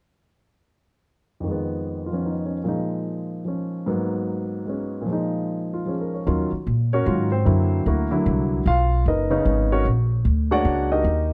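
Moody and smoky, this cut from a longer jazz piano trio piece swings in 3/4 at 150 BPM, with a concert grand carrying the melody from 1.4 seconds through a shadowy progression of half-diminished, suspended and altered chords such as Fm7b5, Abm9 and Bb7alt. The piano sounds polished and present, with deep bass, short sustain and plate reverb. At 6.3 seconds, as the second section begins, an upright bass joins up front, its pizzicato gut strings woody and thumpy, all set in a dark, warm production with moderate studio reverb.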